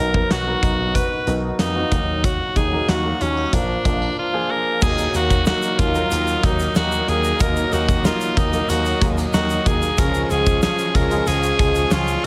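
Urgent and nostalgic, this 1980s-style pop passage in Eb minor moves at 93 BPM in a straight 4/4, led by a raspy, forceful alto saxophone up front over a polished grand piano, a twangy, scooped clean electric guitar riff with ensemble chorus, and a punchy slap bass with an envelope filter, all driven by a big, dark rock drum kit with punchy kick, crash, hi-hat, snare and tambourine. At 4.8 seconds the arrangement fills out with a very quiet double-tracked distorted guitar, a vintage string machine playing slow-attack cello chords with a sub octave, a grainy egg shaker, and detuned synth brass stabs with a filter sweep that return at 10.0 seconds. The harmony moves from Bmaj7 through Ebm and Bb before settling on Ebm and then Db, all in light studio reverb in this excerpt cut from a longer piece.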